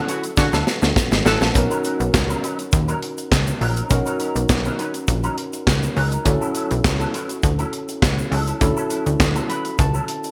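Opening on a barky tine electric piano with lush chorus and a bright, twangy envelope-filtered guitar riff, this smooth, danceable early-eighties boogie funk excerpt in B major at 102 BPM gets a brief smooth-topped horn line in the background from 0.1 to 1.4 seconds, a studio drum kit with a punchy kick, handclaps, high-tuned snare and gated reverb, a grainy egg shaker, and a plucky sawtooth analog bass entering at 0.4 seconds, moving from Dmaj9 to Bmaj9 and back under bright 1980s-style digital production before a closing electric piano fill at 9.2 seconds.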